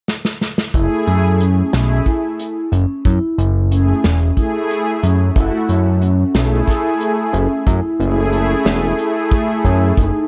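A fat analog bass leads the mix, its detuned sawtooth and square-wave tone shaped by a filter sweep and a moving notch, with a fast attack and sustained low notes. This is an intricate, driving progressive instrumental in 7/8 with a straight feel, cut from a longer piece. An acoustic drum kit played with bundle sticks opens with a short fill at 0.1 seconds, its tight kick, medium-tuned snare and hi-hat sounding up front in a small room. At 0.7 seconds the bass, a lush unison pad and a vibraphone arrive together. The pad is thick, warbling and vintage, with a chorus effect, slow attack and long release. The close-miked vibraphone, struck with medium mallets, rings out metallic arpeggios with a slow motor vibrato, all within a dry, close 1970s-style studio sound with little reverb.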